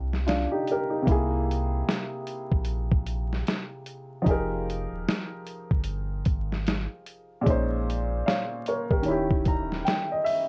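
Lo-fi hip hop in C minor at 75 BPM with a 61% swing on the sixteenths, this melancholic, hazy excerpt sets a woody, up-front upright piano with short sustain and cassette-tape filtering over a deep, thick, saturated sub bass that stops at 9.8 seconds and a compressed, muffled, pitched-down sampler-style drum kit with a thumpy kick, medium-tuned snare, hi-hat and 12-bit grit, all bathed in light reverb, warbling tape drift and vinyl crackle as the chords move from Cm11 through Fm11 and Bbm11 to Eb7b9.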